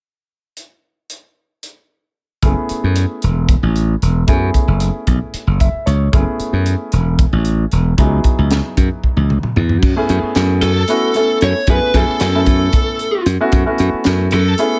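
Slick and funky, this brief cut from a longer electric jazz fusion piece moves at 227 BPM in 7/8 in F# minor, opening with a crisp, high-tuned acoustic drum kit alone before a growly, punchy slap bass and a clear, polished baby grand piano enter at 2.4 seconds over F#m11 and C#m11 chords. The piano slips in a fill around 5.3 seconds and the drums, saturated and gritty in their pumping small room, roll through a fill just before 9.8 seconds. At 10.6 seconds a dark, overdriven lead guitar through a small cranked amp takes the melody with slapback echo, all under light reverb in a small room.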